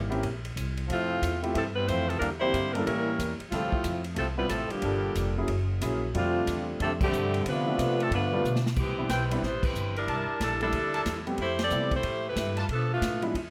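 Heard in a moderate large-studio reverb, this joyful, brassy big band swing excerpt sets a clear, up-front saxophone section on the melody above a woody, growly pizzicato upright bass, a warm grand piano accompaniment and an airy drum kit with a punchy kick, ride and hi-hat, while a tight, close-miked trombone section carries a second line until 8.6 s, a drum fill arrives at 8.4 s, and a trumpet section with a smooth top adds stabs from 9.1 s.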